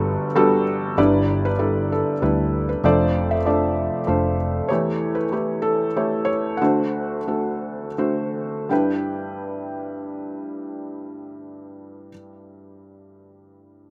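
This acoustic folk-pop ballad in G major unfolds in a gentle 3/4 at 80-97 BPM, with a nostalgic, tender mood, cut from a longer piece. A felt-muted upright piano carries the melody throughout, its soft, mellow tone sitting up front and intimate, with the thin felt and audible action noise lending it a close, private character. A vintage muted fingered electric bass supports it only until 4.6 seconds, its dark, round, punchy sound shaped by a foam mute and amp. The harmony moves from Gmaj9 through G6, Dm7/F, A7/E and D7 before settling back on G6 at the start of the second section at 8.7 seconds. The tempo slows between 4.7 and 8.7 seconds, easing the first section into the second. Recorded outdoors with a light reverb, the sound feels open and unadorned.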